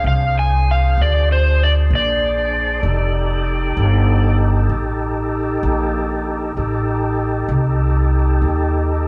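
An overdriven electric slide guitar sits up front with a warm tone, carrying the melody and then dropping out at 4.4 seconds. This short cut from a longer piece is a slow blues in 12/8 at 64 BPM, with a rollicking, swaggering mood in F mixolydian. Beneath it, a tonewheel organ holds full, clean sustained chords through a slow rotary speaker with chorus vibrato and a touch of key click, moving from Bb7 to F7 at 2.8 seconds. A pizzicato upright bass on gut strings anchors the low end with a woody, thumpy sound that is also up front. The band plays live together in one large studio with moderate reverb, and the highs top out at 10.8 kHz.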